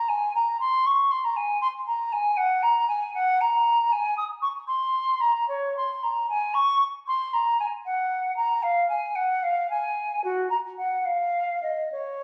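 Flowing and introspective, this 12.2-second fragment of a baroque-style classical fantasia in Db major moves at a rubato 76 BPM in 12/8 with uneven beats, as a solo silver concert flute, hollow and mellow with vibrato and a crisp attack, sings between Gb4 and Eb6 through a moderate recital-hall reverb, club reverb and compression, captured on a phone in the room.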